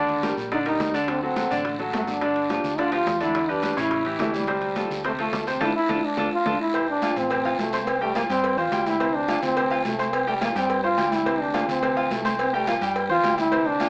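Salsa at a driving, danceable 212 BPM in D minor, this piece is led up front by a breathy, intimate trombone with light vibrato and a soft attack, over a bright grand piano whose action noise is audible and a dark, round hollow-body electric bass. Behind them sit thick-skinned congas in a distant large room, low-tuned bongos and cowbell, and ringing metal-shell timbales with agogo bells, while a raspy guiro adds its scrape, with drum fills at 1.8 and 6.2 seconds and a band accent from 5.6 seconds. The first half moves through a shifting chord sequence before settling at 6.7 seconds into a rocking Dm7 to Csus4 vamp, all heard through moderate studio reverb and a small-speaker sound.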